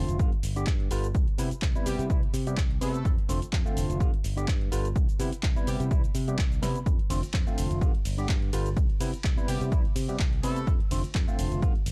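A dark, dry mix frames this funky, feel-good filtered disco house groove at 126 BPM in C major with a light 16th-note swing, where a punchy analog drum machine's handclaps, hi-hat, ride cymbal, shaker and snare and an up-front, tape-warm electronic kick drive a bright fingered electric bass and a barky tine electric piano played through a combo amp with phaser, both pumping against the sidechain over a G7, Cmaj7 and F6 chord cycle, while a brilliant, tight jazz-style horn section with vibrato and octave doubling enters at 1.9 seconds, a drum fill arrives at 6.6 seconds, and the horns return at 9.5 seconds.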